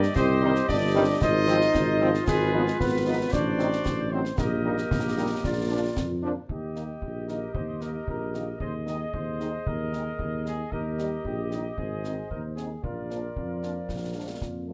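Closely miked with light reverb, this spirited, festive military-style march for wind band in Eb major moves at 114 BPM in 2/4, with a dark trumpet section carrying the melody over a vibrato-touched woodwind section, a mellow, up-front tuba bass, a background euphonium that drops out at 6.2 seconds and returns at 13.4, distant French horns, sustained trombone chords that end at 6.3 seconds, and close, dry snare, bass drum and dark-toned clash cymbals as the minor-tinged opening resolves into a bright major strain.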